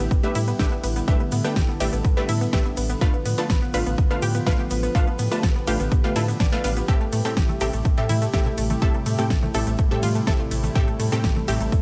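An overdriven, punchy electronic kick sits up front in this bittersweet progressive house excerpt, driving a sidechain-pumped bed of a dark, chorused pad, a detuned analog pluck arpeggio with digital delay, bright wave-folded unison stabs, a round deep bass, and a pop kit with a fat snare and crisp hats; a grainy tube shaker rides along, and woodblock and congas join in the background at 7.1 seconds.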